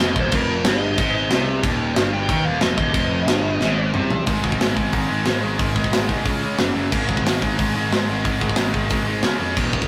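A dark, distorted lead guitar opens this rowdy, upbeat punk rock excerpt alongside a bright, double-tracked overdriven rhythm guitar riff and a growly fuzz bass, with a tight metal drum kit entering at 0.2 seconds; the lead drops out at 3.9 seconds just as a drum fill carries the band into a new section at 4.3 seconds, all in a rough rehearsal-room sound with saturated grit and moderate reverb.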